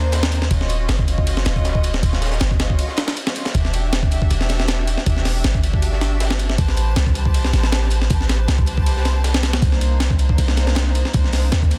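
A gritty, compressed breakbeat sampler-style drum kit with a thumpy kick and medium-tuned snare sits up front in studio reverb, driving this dark, raw drum and bass and jungle cut from a longer piece at 158 BPM. Alongside it, a deep, boomy 808-style bass holds the low end, while a very quiet, saturated second breakbeat kit with a high-tuned snare adds crunch beneath, and a clear, bowed symphonic string section holds smooth sustained chords moving from Cm9 through Em9 and Am9, all under a dense, heavily limited master with a brief break at 2.8 seconds.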